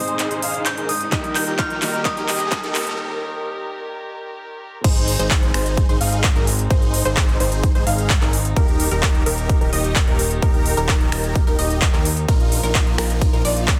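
Triumphant and uplifting festival progressive house cut from a longer piece opens on a build-up where a crystalline FM synth bell with 12-bit sampler grit, a soft felt-muted upright piano with audible action noise, rich chamber strings, a huge detuned supersaw riff and a background riser gather over a drum fill from a big-room kit of crisp hats, handclaps, finger snaps and cymbals; a punchy, overdriven electronic kick joins at 1.1 seconds, and the drop at 4.8 seconds brings in a lush unison pluck arpeggio and a fat, tube-saturated analog bass, with sidechain pumping on the strings, supersaw, pluck and bass, all in a dense, heavily limited master with light reverb.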